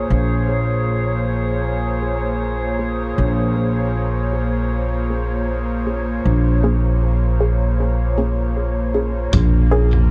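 Swung sixteenths at 78 BPM in 4/4 carry this spacious, meditative ambient dub excerpt in Bb minor, resting on Bbm7, where a woody, growly pizzicato upright bass sits up front beneath an airy, breathy chorused pad, a calm, glassy sine texture of drifting overtones, and a muted, phased sawtooth chord stab with dub echo and a filter sweep lurking in the background, before a very quiet, tape-warm electronic kick and a muffled, compressed lo-fi sampler-style kit with hi-hat and toms arrive at 9.3 seconds in an echo-heavy mix.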